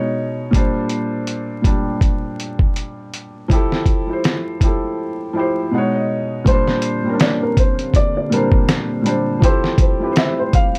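Lo-fi hip hop with a nostalgic, mellow mood, this short excerpt from a longer piece moves with a lazy swing in 4/4. A soft, felt-muted upright piano opens alone, its intimate, short-sustained chords dulled by cassette tape coloring and a low-pass filter, and a sampler-style drum kit enters at 0.5 seconds with a thumpy kick, fat snare and hi-hat, compressed, pitched down and muffled as if re-recorded in a small room. The harmony drifts between rich sixth-ninth and major ninth chords, and a break arrives at 5.0 seconds, where the felt piano adds a brief fill. From 6.5 seconds a second, darker upright piano carries a melody in a narrow upper range, woody and vintage in tone with audible action noise and a filtered, smooth edge. A deep, moody analog pad of detuned square, sawtooth and triangle waves with a sub octave rises slowly in the background at 7.2 seconds, shaded by chorus, phaser and a low-pass filter. 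Vinyl crackle and a moderate studio reverb frame the whole scene, with the drums and felt piano sitting up front.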